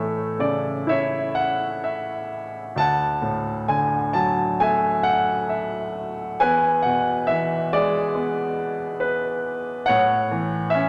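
A wet concert-hall reverb surrounds this recording, and a touch of tube saturation colours the sound of the baby grand, which sits up front with a clear, open tone and long sustain. This lyrical classical solo piano fragment, cut from a longer piece, carries a dark and reflective mood. The single piano is the only voice, ranging from D2 up to A5 and moving in a free, rubato 4/4. Its harmony starts on A, shifts to Dadd9 at 2.8 seconds and E at 6.4 seconds, and comes home to A at 9.9 seconds. The hall's lingering tail lets each chord bloom and fade into the space, deepening the introspective character of the 10.9-second passage.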